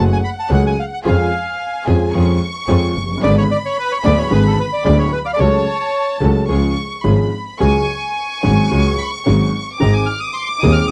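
A reedy bandoneon carries the melody up front, its tone slightly boxy as if in a small room, in this melancholic, sultry tango fragment taken from a longer piece. It moves at 109 BPM in 4/4 with a rubato feel, tuned to A4 = 442 Hz. Beneath it, a bowed double bass sits up front and biting, earthy with a light vibrato, while a dark upright piano supplies mellow, woody accompaniment with long sustain and audible action noise for a vintage character. A warm chamber violin section adds a soft-attack second line played sul tasto with intimate vibrato, and a smooth, even chamber string section punctuates with stabs in the background. The harmony turns from F#madd9 through G#dim and C#sus4 to close on G#. All five parts play for the full 10.9 seconds, captured in a dry, close 1970s-style studio sound with little reverb.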